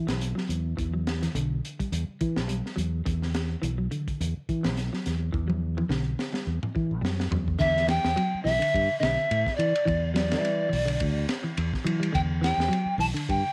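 An airy, tongued pan flute with vibrato carries the melody from 7.6 seconds in this hypnotic, intense afrobeat excerpt in E minor at 106 BPM, riding over an up-front fingered electric bass, dark, clean semi-hollow guitar arpeggios coated in analog chorus, and a gritty, saturated breakbeat kit with a punchy kick and high-tuned snare that plays a fill from 5.3 seconds, all set in light reverb.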